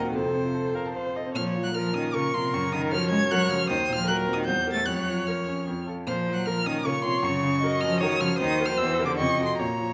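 A stormy, dramatic classical-period movement for piano quartet in Bb minor, this quick 3/4 passage at 153 BPM moves with rubato, its harmony turning through Gb and C7/E before landing on F7b9 at 9.2 seconds. The warm violin carries the expressive melody from 0.1 seconds with vibrato and portamento, while the distant cello sings a second line with the same sliding, vibrato-rich phrasing. The dark, airy viola and the clear, up-front grand piano, whose action noise is audible, fill out the accompaniment, all captured by close, detailed microphones in a moderate recital hall reverb.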